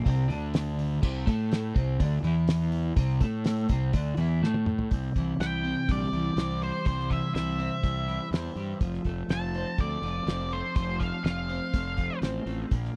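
A dry, close 1970s-style studio sound with little reverb frames this hypnotic, trippy psychedelic rock excerpt at 123 BPM in C major, where a bright, twangy twelve-string electric guitar riff, double-tracked and flanged, moves from a rootless Bbadd9 to C over a round, punchy fuzz fingered bass and a cloth-damped, thuddy drum kit with dark cymbals and a fat snare. After a drum fill, an octave-fuzz lead guitar with tape echo enters at 5.4 seconds and plays a distorted melody up to A5 until 12.2 seconds, as the harmony shifts to F at 8.8 seconds.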